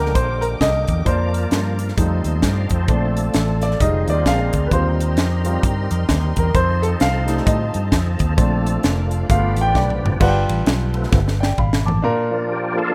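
A swung 4/4 groove at 131 BPM drives this jubilant, uptempo gospel cut in Bb major, a short slice of a longer piece. A crisp fusion drum kit sits up front with an airy, polished studio-room sound, a high-tuned snare and a tight kick, while a round, punchy fingered electric bass anchors the low end. The grand piano, smooth and vintage in tone, takes the lead with a solo through the opening 10.2 seconds, moving over a bright progression that passes through Ebmaj7, F7 and Bbmaj7 before turning toward G7. Behind it, a tonewheel organ holds full, thick chords through a fast rotary speaker with light overdrive and chorus vibrato, and a dark studio string section adds soft, bowed sul tasto pads in the background. The drums mark the change into a brief closing section with a fill ending at 10.2 seconds and another beginning at 11.1 seconds, and the harmony resolves on Bb at 12.0 seconds. The mix has light reverb and the rough, uplifting character of a home demo.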